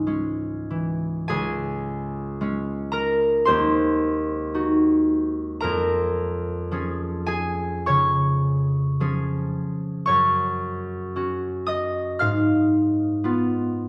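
Classical music for solo concert harp, elegiac and solemn, moving with a rubato sway in 4/4 across this 13.9-second excerpt cut from a longer piece. The harp, bright and ringing as it sits up front, plays a fingerpicked accompaniment spanning its low to high registers, with harmony drifting through diminished chords, reaching Gb5 at 10.1 seconds before closing on Fdim/Ab at 12.2 seconds. A wet recital hall reverb lets each note bloom into the room.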